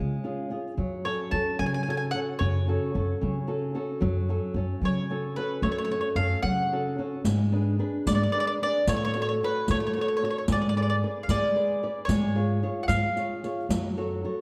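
Wistful and passionate, this short excerpt from a longer Italian folk serenade moves in a straight 6/8 at 74 BPM, set in F# harmonic minor. A fingerpicked flamenco guitar sits up front from the start, its warm tone marked by audible finger squeaks, while a pizzicato upright bass with gut strings adds a thumpy, woody low end. A bright mandolin enters at 1.1 seconds to carry the melody, its picked double strings ringing close and clear. At 7.3 seconds the harmony turns toward a G# diminished chord, and a riq joins with dark jingles heard in a live room. The chords circle back to F# minor by the close, and a recital hall reverb lends the dark production a lingering, spacious glow.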